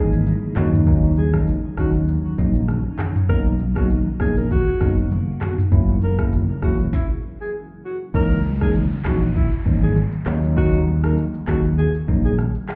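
A swung 4/4 afrobeats groove at 99 BPM in C# dorian, smooth and hypnotic, rides on an electronic drum kit with deep kick, sharp snare, metallic hats, handclaps, rim clicks, shaker and toms, plus a warm, up-front fingered electric bass and ringing congas in the background. A breathy, intimate alto saxophone with scooped notes, vibrato and digital delay carries the melody over a bell-like tine electric piano and a cloudy granular pad that drops out at 6.9 seconds before a brief stop, and a faint downlifter enters at 8.1 seconds. Everything is heard muffled as if through a wall, with club reverb, in this cut from a longer piece.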